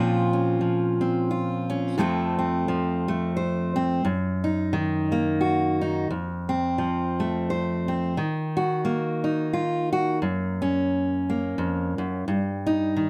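A fingerpicked steel-string acoustic guitar plays alone from the first moment, its bright, up-front tone carrying an intimate, wistful folk mood in a lilting 3/4 at 88 BPM with a gentle swing on the eighths. Over about 13.1 seconds it moves through shadowed chords, from Bbmadd9 through F and Ebm toward a closing Eb/G, spanning from low bass notes up into its upper register. A touch of light reverb gives the guitar a sense of space while keeping it close to the listener.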